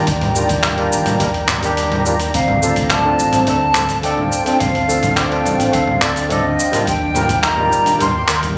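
Relaxed, warm sunset chillout in which a barky, lightly overdriven tine electric piano with tape echo and a shimmering, ethereal ambient pad sit over a round, dark analog bass, a gritty, compressed sampler-style soul kit of cabasa, handclaps, hi-hat and toms, and a deep electronic kick in the background, and at 2.3 seconds a breathy, hollow jazz flute with vibrato takes the melody alongside mellow steel pan arpeggios, all heard through plate reverb and a phone recording in a club-like room.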